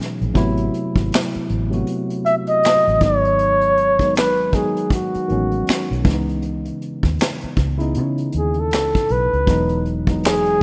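A rough home-demo mix in a small room with light reverb frames this short, relaxed R&B and neo-soul fragment, cut from a longer piece and moving at an unhurried 79 BPM with a 16th-note swing. A vintage brush kit sits up front from the opening, dark and smooth with a tight kick, a medium-tuned snare, hi-hat and finger snaps, its top end rolled off. A worn tine electric piano, slightly out of tune and lightly overdriven through a combo amp, carries the chords, while a foam-muted fingered electric bass enters at 0.2 seconds with a round, punchy, amped tone. At 2.3 seconds a breathy flugelhorn takes the solo melody, mellow and soft in attack with light vibrato and a slapback echo, sitting prominently over the band. The harmony drifts through Am6, G#m7 and C#m9 before landing on Emaj7, giving the passage a sensual, laid-back glow.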